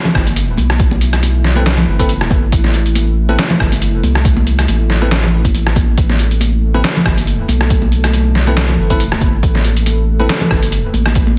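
A saturated sub bass sits up front in this brooding, meditative stretch of deep dubstep, its thick, triangle-shaped tone holding low sustained notes with a fast attack from the very start. Alongside it, a punchy, layered electronic kick and a gritty, pitched-down trip hop drum kit carry the half-time feel with a light swing, the kit's compressed snare, hi-hat and rim click sounding as if re-recorded in a small room. Bright, band-limited congas played with hard hands tap along in the background, trailing a dub echo. A dark, detuned ambient pad with a slow attack and long release enters at 0.4 seconds, sustaining moody suspended chords bathed in chorus and its own reverb. From 1.6 seconds a bell-like tine electric piano adds clean stabs, shimmering with lush chorus and dub echo until 10.3 seconds. The dense, heavily limited master carries a light reverb and a layer of vinyl crackle, and the piece is cut from a longer work.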